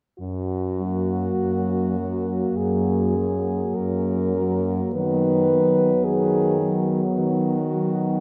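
Tender and warm, this short classical fragment for horn quartet unfolds at a slow, unhurried pace in 4/4, with a freely breathing rubato feel. Two horns open together at 0.2 s: a lead horn carrying the lyrical melody in a middle register, and a punchy bass horn placed up front beneath it. At 0.8 s two more horns join: a dark, soft-attacked second line sitting in the background, and an accompanying horn on a single low note. The melody and accompaniment horns share a mellow tone and light vibrato, while the accompaniment and second line both have a smooth top. The harmony moves once, at 4.9 s, before the passage breaks off as a cut from a longer piece, all of it heard from further back in a wet cathedral reverb.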